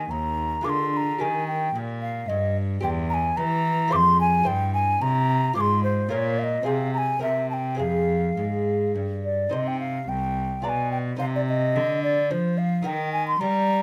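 In a straight 3/4 at 109 BPM, this baroque-style sonata movement with continuo moves at a measured, solemn pace, introspective in mood and cut from a longer piece. A mellow, hollow wooden flute carries the melody from C5 up to D6, its airy tone touched with vibrato, crisp attacks and lifted highs, sitting up front in the mix. Beneath it a single bowed cello, close and rich with a reedy gut-string period tone, holds the bass between C2 and G3. A delicate, fingerpicked lute fills in the harmony on doubled gut strings, some octave-doubled, its bright acoustic voice set lower in the balance. The harmony works through F minor with a pass through Bbm and C7 before turning to C minor at 9.5 seconds, where the phrase begins again, and it closes on Eb. Light reverb gives the trio a modest sense of space.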